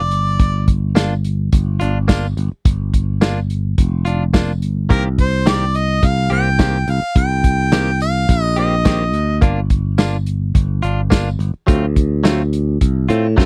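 An overdriven harmonica stands out at the front of this mournful, brooding soul blues in G minor, its clear tone carrying light vibrato and scooped notes, with a brief phrase at the start and a fuller one between 4.9 and 9.4 seconds. Beneath it, a bright, growly picked electric bass holds the low end with a punchy, up-front presence from the opening moment. A soul drum kit enters at 0.1 seconds with a tight kick, medium-tuned snare, hi-hat and tambourine, its sound rolled off at the top and set in a small room. From 1.0 seconds a clean, compressed electric guitar, recorded direct, adds twangy picked stabs. The straight-eighth groove moves at 106 BPM in 4/4 through Gm7 and Cm7, closing on a tense D7#9. The dry, close production recalls a 1970s studio, and this short passage is cut from a longer piece.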